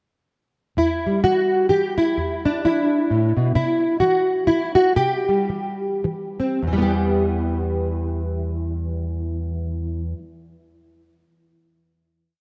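Intimate and wistful, this short, complete folk piece for solo nylon-string guitar sits in E minor at 98-131 BPM in a swung 3/4, tuned slightly sharp to A4 = 443 Hz. The warm, up-front, classical-toned guitar is fingerpicked with an alternating, palm-damped thumb under a motif-based melody of call phrases, moving from Em to C and slowing from 3.5 to 6.6 seconds before settling on a final Em chord that rings to 10.3 seconds. An ensemble chorus thickens the guitar, and a moderate plate reverb soaks the mix in a dreamy haze.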